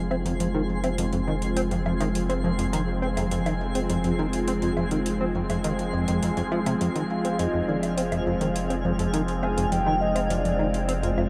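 A punchy, saturated analog bass riff drives this short cut from a longer piece of ambient, sequencer-driven space music, its sawtooth and square-wave plucks colored by ring modulation, lush chorus and tape echo. Beneath it, a deep, round sine sub bass holds a single low note, while a detuned, swirling pad sustains one chord through phaser and chorus. High above, a twinkling granular texture scatters sparkling, FM-tinged shimmer in its own reverb, and an electronic woodblock with metallic hi-hats ticks quietly through tape echo. At 7.1 seconds a soft, mellow lead layered with a sub octave enters with vibrato, carrying the melody until 10.9 seconds. A huge, wet reverb sets the whole piece in a vast, echoing space, giving it an expansive, mysterious pull.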